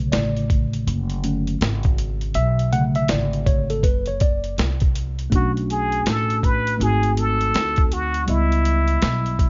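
A dark, warm mix with a small-room ambience and a dulled top end frames this short, nocturnal jazz-hop cut at a relaxed 81 BPM in B dorian, with a swung sixteenth-note feel. The boom bap sampler-style kit sits up front, compressed and pitched down, with a hi-hat, a thumpy kick and a high-tuned snare carrying the gritty groove. A pizzicato upright bass, woody and growly with a steel-string edge, holds the low end close to the listener. For the first 5.3 seconds a worn, slightly out-of-tune tine electric piano takes a mellow, clean solo over a Bm7 chord. At 5.4 seconds a plunger-muted trumpet enters with a vintage, punchy wah-wah tone and scooped notes, its slapback echo adding a short repeat as the harmony moves through G#7b9 and C#m7b5.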